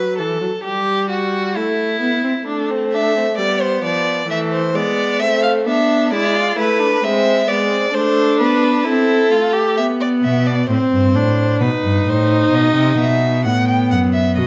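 Contemplative and solemn, this classical fugue in a baroque style for string quartet moves at an unhurried, straight pace in four, taken from a longer piece. A dark viola carries the accompaniment throughout with soft attacks, vibrato and expressive portamento, while a distant-sounding violin with a warm tone traces the second line until 9.8 seconds. At 2.9 seconds a rich violin enters with the melody, singing up front with vibrato and gliding portamento. At 10.2 seconds a cello joins on the bass, intimate and close, with light vibrato, a soft attack and an airy bow. The harmony unfolds through a mix of minor and major chords before settling on a B7 sonority, all bathed in the wet reverb of a recital hall.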